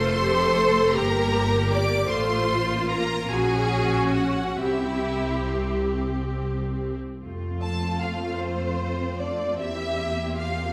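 A close, warm violin section carries a smooth, even melody with vibrato through this slow, tender 6/8 movement for string orchestra in F major, its rubato pulse sitting around 45-55 BPM. Beneath it, a second violin line sings with lush expression, violas add a rich, steady accompaniment, and cellos stay in the background, while a focused double bass section sits up front to anchor the harmony. The lyrical passage, cut from a longer piece, moves into a new section at 7.2 seconds, and a wet scoring-stage reverb gives the bowed ensemble a spacious studio bloom.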